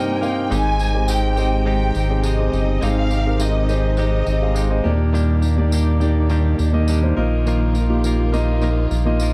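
A round, dark analog bass sits up front from 0.5 seconds, deep and sustained with a fast attack, anchoring this earnest, driving piano-driven pop passage cut from a longer piece at 104 BPM in a straight 4/4. Close behind, a concert grand piano carries the accompaniment with a full low end and long sustain, while a bright, twangy clean electric guitar, recorded direct and compressed, picks out a riff. A distant symphonic violin section bowed with vibrato sings the expressive melody with a slapback echo until 4.8 seconds, and a lush studio string section holds very quiet sustained chords underneath. A jingly, vintage tambourine adds a band-limited shimmer of percussion. The harmony moves from Cm7 through Abmaj7 and Ebmaj7 to a suspended Bbsus4, all captured in a dry, close, 1970s-style studio sound with little reverb.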